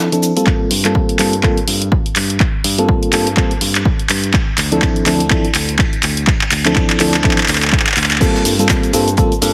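Deep house at 124 BPM with a 16th-note swing, moody and warm, cut from a longer piece. A soft, round FM electric piano plays dark stabs through chorus, cassette tape and tape echo with sidechain pumping over Gm11 and Dm9, while a punchy, tape-tinged analog drum machine with handclaps, hi-hat, shaker and crash sits up front alongside a thumping electronic kick and a bright, direct fingered bass that also pumps. A long build-up with a drum fill and a filter sweep on the piano runs from 0.5 to 8.2 seconds, where the drop arrives and a very quiet, distant soul kit adds snare and hi-hat, all under plate reverb and heavily compressed, radio-like mastering.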